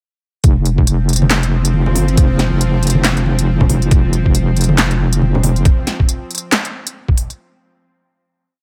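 Dark and cavernous, this deep dubstep piece moves at 138 BPM in 4/4 with a half-time feel and a swung sixteenth-note lilt, sitting entirely within a drop that runs from 0.4 to 7.4 seconds. Up front, a gritty, pitched-down electronic kick thumps with a compressed, tape-warm weight, joined by a layered deep house kit whose punchy snare, handclaps and smooth hi-hats carry the half-time beat. A heavy wobble bass holds long, dark notes from F1 to G1, its saturated square-and-sine tone given a mellow sheen by chorus. Low-tuned, damped congas with a thick-skinned, vintage character echo in the background from 1.2 seconds. Above it all, a tense, string-like drone of detuned sawtooth voices sustains chords between F3 and C4, slow to rise and long to fade, with vibrato, a noise layer, built-in reverb and a phaser lending it a bright, shimmering edge, while the overall mix stays dry and close.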